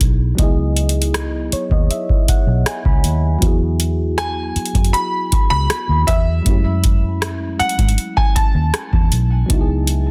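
Sensual and moody, this contemporary R&B excerpt sets a booming analog drum machine with a deep kick, metallic hats, rim clicks and a softly clipped snare over a dark, foam-muted fingered electric bass, while a mellow, warbling FM electric piano with chorus plays a fill from 1.1 to 3.4 seconds and a clear baby grand piano with tape echo carries the melody from 4.2 seconds, all moving through C#m11, Eadd9 and F#m9 inside a digital ambience.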